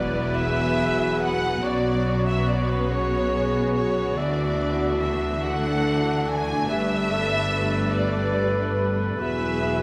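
A muted violin section carries the melody in this slow, rubato cinematic passage in 6/8 at 48 BPM, its veiled, con sordino tone sitting close over a second line of muted violins, a dark viola section and muted cellos in the background, while a lush double bass section anchors the bottom. Woodwinds weave gentle second lines: a pure, hollow silver flute, a distant, roomy clarinet and a vintage-toned cor anglais with light vibrato, and a mellow French horn section adds sustained chords from 0.3 seconds. Washed in a generous scoring-stage reverb, the harmony drifts through suspended and added-ninth chords, giving this short excerpt a hopeful, moving glow.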